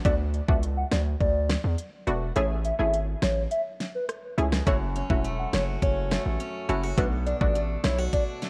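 A heavy, up-front 808-style bass and a knocking, layered electronic pop drum kit with fat snare and crisp hats (its kick drops out from 2.4 to 4.7 seconds) drive this tough, sultry dancehall excerpt at 104 BPM in F# minor, beneath a hollow, woody clarinet-like synth lead with chorus, vibrato and delay, bright detuned chord stabs with chorus, and a boxy, picked swing-style acoustic guitar that joins at 4.7 seconds, all coloured by light reverb and worn, warbling cassette-tape pitch drift.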